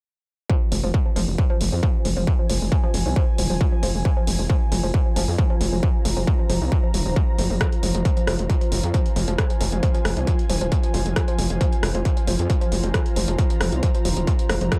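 Driving peak-time techno with a hypnotic pull, this short cut opens at 0.5 seconds on F minor, led by a distorted, overdriven electronic kick drum sitting up front. A gritty, aggressive synth bass with saturated sync and ring-modulated tones pumps against the kick, while a punchy analog drum machine adds hi-hat and rim click. In the background, a woody, wave-folded pluck riff with chorus, tube saturation and tape echo sits beneath an ethereal, airy pad that glows with ensemble chorus and its own reverb, all within a dry, raw hardware sound.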